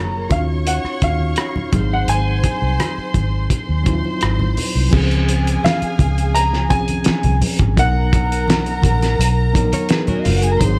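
A clear grand piano carries the melody with tape echo over softly bowed, vibrato-laden strings, a mellow tine electric piano and a round, dark muted bass, joined at 0.3 seconds by a muffled, cloth-damped drum kit with a fat snare and by very quiet congas, in this lush, smooth 1970s-style soul excerpt, where a clean, direct-recorded electric guitar riff slips in at 9.7 seconds.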